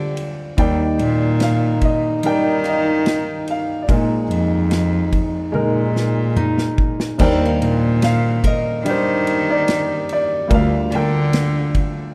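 Heartfelt and tender, this acoustic folk-pop ballad in Eb major moves at a straight 72 BPM. A dark, boxy concert grand piano carries the melody up front with a slapback echo, while a single bowed cello plays the bass line sul tasto with light vibrato and an airy, intimate tone. A picked steel-string acoustic guitar spins arpeggios until 10.0 seconds, and a mellow, close-miked French horn adds a soft second line in the background until 6.7 seconds. A loose indie drum kit with a punchy kick and a pumping small-room sound plays a fill from 5.5 seconds, in a dry, dusky production cut from a longer piece.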